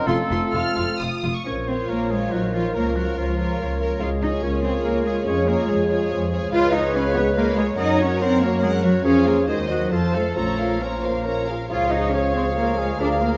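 Dramatic and urgent, this brief passage from a longer classical-period movement for symphony orchestra moves quickly in three with a flexible, rubato feel. A lush, expressive violin section carries the melody high above the ensemble with rich vibrato, while a second, more focused violin line sits distant in the background. Beneath them, a smooth, even cello section and double bass section form the bass, supported by a dark bassoon and a very quiet viola section whose bowing glides with portamento. Oboe, clarinet and an airy concert flute add woodwind second lines, and a mellow French horn section holds sustained chords behind the strings. At 11.7 s a trumpet with a soft attack and a vintage tone enters with stabs, colouring the final chord of the passage. The whole orchestra sits in a wet scoring-stage reverb that lends it a large, enveloping space.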